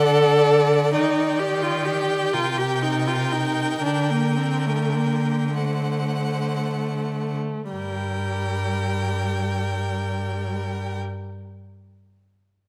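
Classical chamber music for string quartet: a slow, elegiac and yearning romantic movement in a lilting compound metre, played with free rubato and a gradual slowing over the first 7.7 seconds before the music settles into a new section. All four players sound throughout this brief fragment, with a bright, focused first violin carrying the high melody over a second violin's rich inner line, while the viola's expressive accompaniment, with soft attacks and portamento, sits up front beside the cello's smooth-topped bass, each part colored by vibrato. Close, detailed microphones capture the players in a moderate recital-hall reverberation.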